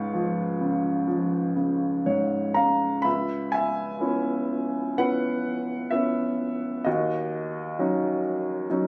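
Captured on a phone in the room, this short, compressed fragment has a light club reverb around a woody, natural upright piano that sits up front. It is a calm, tender classical solo piano piece in 4/4, moving with rubato at roughly 59-67 BPM and ranging from Db2 to Db6. It opens in Db major, the piano adds a fill from 1.6 s, and at 3.1 s the music turns to C# minor with a C#m7 chord before reaching D#m7 at 6.9 s.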